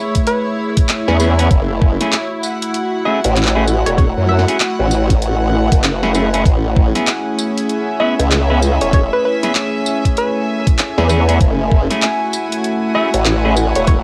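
A warbling, lo-fi pad and a rich, floating string section open this funky, playful glitch hop excerpt, with a barely audible downlifter beneath them, before a tape-colored dubstep kit with a huge snare and bright hats and a knocking, up-front electronic kick arrive. A woody, wave-folded pluck carries the swung melody with tape echo, and from 1.1 seconds a clean, picked electric guitar adds stabs while a detuned, overdriven formant-sweep wobble bass fills the low end. The harmony moves between Amaj7 and F#m9, with the pad, strings and guitar pumping in a moderate room that gives the piece a homemade cassette feel.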